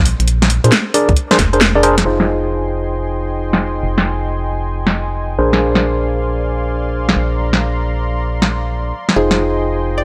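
A dry, gritty hardware sound with transformer saturation and light digital ambience frames this moody, skippy two-step UK garage excerpt at 135 BPM in F dorian, where a hollow, dark FM bass with an organ-like bite and an up-front garage kit with cracking snare and low-passed hats (plus a tight electronic kick heard only from 1.1 to 1.5 s) drive a swung groove under clean tine electric piano stabs through low-pass filter and analog delay, while a smooth, detuned analog pad with chorus, tremolo and sidechain pumping enters at 2.1 s as a filter sweeps the drums, and a twangy, string-like resonator pluck with phaser slips in behind at 9.2 s over the returning Fm7 chord.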